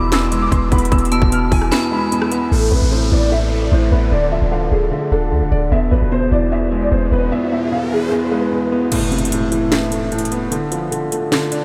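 Trap-leaning hip hop in a half-time feel, this short cut from a longer piece sounds eerie and hard-hitting, set in a dreamy mix soaked in a huge ambient reverb. A dark grand piano with audible action noise carries the melody through an ensemble chorus and delay, over a felt-muted upright piano whose soft, intimate chords run the whole way through. A clean 808-style bass gives deep, boomy sine notes up front until 7.3 seconds. The overdriven trap kit, with a hard-clipped kick, sharp snare, metallic hats, handclaps, rim clicks and crash, hits in two bursts, returning at 8.9 seconds with its kick muted. Early on, a metallic FM bell adds a ringing, inharmonic line in the background, and electronic sound effects follow, with a riser building into an impact where the harmony moves from E back to Amadd9 and Dm.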